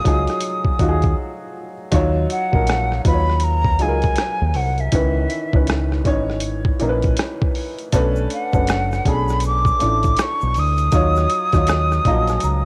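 R&B and neo-soul at a sultry, soulful 80 BPM with a swung 16th feel, this cut from a longer piece sets a breathy, vibrato-laden jazz flute melody over an intimate baby grand piano with audible action noise and a round, dark fingered electric bass, all driven by a gritty, pitched-down boom bap drum kit with a thumpy kick and rim clicks. The flute, piano and drums carry a cassette-tape tint, and a brief break arrives at 1.2 seconds. A faint egg shaker and finger snaps join in the background at 7.9 seconds, and a piano fill at 11.7 seconds closes out the Ebm9, Dbm9, Bm9 progression as it returns to Ebm9.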